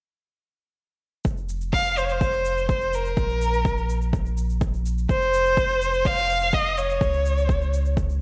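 Piano and strings electronica at 125 BPM in a straight 4/4, this short cut from a longer piece carries an intimate, melancholic mood. A round, sine-based sub bass with a fast attack and sustained tone moves between F1 and Db2 under sidechain pumping, while an overdriven electronic kick sits up front, deep and layered, alongside a quieter overdriven shaker, both re-recorded in a large room. From 1.7 seconds a single bowed violin carries the melody between Bb4 and F5, expressive and smooth-topped, with vibrato and portamento, placed up front and trailed by tape echo. The harmony rests on F5 power chords alternating with chordless stretches. A lush digital hall reverb of 1.5 seconds soaks the mix, giving it a dreamy, enveloping haze.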